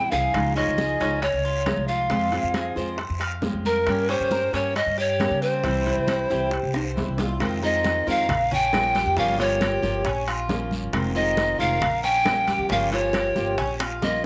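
Danceable Cuban son and guajira in F minor at 136 BPM, led by an up-front, breathy bamboo pan flute with vibrato and a reedy chiff, over a concert-toned, fingerpicked steel-string acoustic guitar and a woody, thumpy pizzicato upright bass on gut strings. A metallic, double-strung Cuban tres adds picked arpeggios with slapback echo, while soft-handed congas, low-tuned round bongos, ringing vintage timbales, a raspy guiro and very quiet woody claves sit in the background. Drum fills mark 0.0, 6.7 and 13.8 seconds, and moderate spring reverb with small-room ambience gives this cut from a longer piece a warm glow.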